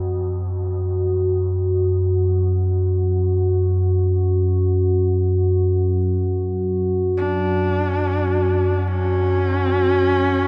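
This dark ambient drone piece drifts in free time, tuned slightly flat to A4 = 439 Hz, and its mood is desolate and unsettling. Up front, a deep, ominous synth drone of detuned triangle and sawtooth tones rumbles through the whole 10.5 seconds, wave-folded and slow to bloom, with a long release and its own built-in reverb. Far behind it, a worn baby grand piano plays faint arpeggios with long sustain, trailed by delay. At 7.2 seconds a single horsehead fiddle enters up front, its husky, boxy bowed tone carrying a narrow melody with vibrato and portamento. A huge, wet reverb with a 7.6-second decay places the piece in a vast, echoing space. The passage is cut from a longer piece and ends while the drone, piano and fiddle are still sounding.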